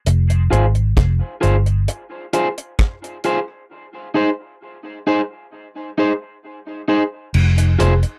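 A deep, dry reggae drum kit with a tight kick, crash, hi-hat and rim click opens this spacious, heavy dub reggae excerpt in F minor at a slow 66 BPM, alongside a dark, round, punchy foam-muted electric bass that sits up front and drops out after 1.9 seconds. From 0.5 seconds a picked, slightly broken-up electric guitar enters high above, shaped by high-pass and low-pass filtering and dub echo, carrying the harmony from F minor to A-flat during a break. The bass returns at 7.3 seconds as the chord settles back on F minor, all captured in a close, 1970s-style studio sound with little reverb.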